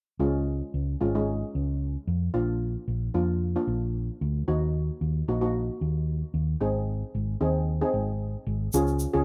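A rough home-demo sound frames this festive, sunny calypso excerpt at 112 BPM in Db major, where an up-front, shimmering double-seconds steel pan played with medium rubber sticks in a boxy small room carries the chords over a dark, round hollow-body short-scale electric bass from 0.2 seconds, moving through Db, Bb, Ebm and Ab before a grainy, bright tube shaker slips in at 8.7 seconds as the progression returns to Db.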